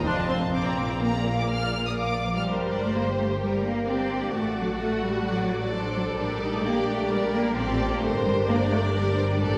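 Quick, lively classical-period movement for string orchestra in G minor at 130 BPM, where a rich, focused violin section carries the melody over a second violin line with a smooth, even tone, a close, lush viola section fills in the accompaniment, and a distant, expressive cello section shares the bass with a soft-attacked double bass section, all bowed with vibrato and set in a wet concert-hall reverb as the harmony moves from F7 and Bb to a G minor close in this spirited fragment cut from a longer piece.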